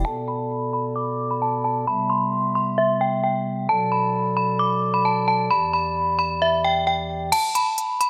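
A metallic FM bell and a soft, hollow stopped-flute pipe organ open this dark, menacing trap excerpt together, both placed up front. The bell carries the melody between E5 and D6 with an inharmonic, ringing tone, fast attack and long release, thickened by chorus and softened by a low-pass filter. Beneath it the organ holds mellow, romantically voiced chords from E2 to E5, moving through Bm7, Cmaj7, Bm7 and Em7 in B phrygian at 132 BPM with a half-time feel, while a filter sweep runs across the section. At 7.3 s the organ stops and the harmony drops out as the trap drum kit arrives with a crash cymbal and crisp, overdriven hi-hats, the kick kept muted, sounding re-recorded in a small room. A moderate, lush digital hall reverb, 1.9 s long, lends the brief piece a spacious, shadowy air before it is cut off at 8.1 s.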